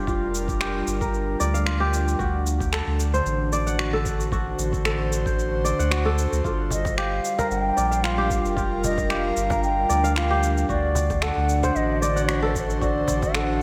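This meditative, hypnotic stretch of organic downtempo opens on an airy, breathy pad holding sustained chords, shaped by chorus and sidechain pumping. A crisp, ringing fingerpicked kora spins arpeggios up front through a diffuse ambient delay. Beneath them, a deep, round sine sub bass sits prominently, and a gritty, thumpy electronic kick joins with overdriven, layered electronic cabasa and finger snaps, both re-recorded in a large room, over a gently swung sixteenth-note feel. At 6.7 s a bamboo bansuri enters with vibrato and tongued notes coloured by analog delay, alongside a woody cajon with faint snares tucked in the background. A lush hall reverb soaks the dreamy mix, and the fragment is cut from a longer piece.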